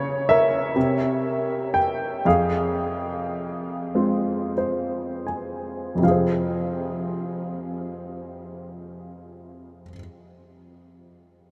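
In a 6/8 felt in slow dotted-quarter pulses of 25-44 BPM, this classical piece for solo piano moves with a free rubato and a melancholic, reflective mood in F minor. A bright baby grand carries everything from the first second to 11.5 s, ranging from F2 to Ab5 with a brilliant yet worn character, its action noise audible and its short sustain placed up front and intimate. The opening section slows through its first 6.0 seconds, harmony passing from Bbm/Db to C7 and settling on Fm, and a piano fill from 3.9 s carries the line into a second section beginning at 6.0 s. Around the instrument hangs a huge, wet reverb with a decay of 8.3 s, as if the piano sat in a vast, echoing hall. Cut from a longer work, the fragment feels like a quiet, inward meditation suspended in that resonant space.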